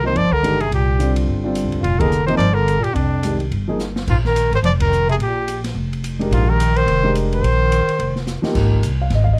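Cool and intense, this brisk modal jazz fragment swings at 214 BPM over C9sus4 and Bb9sus4 chords. A clear, present trumpet with vibrato carries the melody up front, a breathy bass clarinet threads a second line beneath it, and a woody pizzicato upright bass anchors the low end. An intimate grand piano with audible action noise drops out at 3.8 seconds and returns at 6.2. An open drum kit with dark cymbals and a boomy kick, recorded in a small room, adds fills while the whole band hits accents, all within a dark, warm production with light reverb, before the music settles on Fm9.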